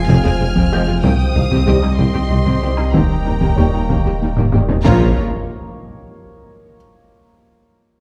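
A dark, reverberant recital-hall sound frames this brooding, futuristic excerpt of a hybrid orchestral and electronic film score in 6/8. Lush, vibrato-rich violin sections carry the melody and a second line over a clear viola section, expressive cellos, a distant double bass section and a mellow tuba, while a thick, saturated sub bass and an evolving, warbling analog drone with chorus fill the low and middle ground. A soft, round pluck plays arpeggios and a muted, intimate felt upright piano adds texture through tape echo; roomy trombones and French horns join with sustained chords at 0.7 seconds, and hard-stick taiko drums in the background close with a fill before a huge impact lands at 4.8 seconds, lasting until 6.7 seconds.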